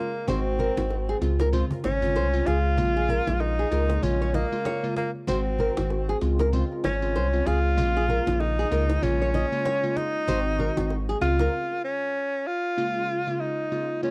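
Afrobeats with a mellow, sultry mood, heard in a short cut from a longer piece: a breathy, whispered tenor saxophone sings the melody up front with vibrato and scooped notes, while a glassy, crystalline wavetable pluck with chorus and a ring-modulated sheen carries the chords. A snappy cajon kept in the background enters at 0.1 seconds, and at 0.3 seconds a deep, round sub bass settles forward beneath them, joined by a fingerpicked nylon-string guitar riff with audible finger squeak and tape echo and by very quiet, soft-handed congas and bongos. Everything but the saxophone and pluck drops out for a break at 11.5 seconds, and the whole piece has the light reverb and hazy character of a home cassette recording.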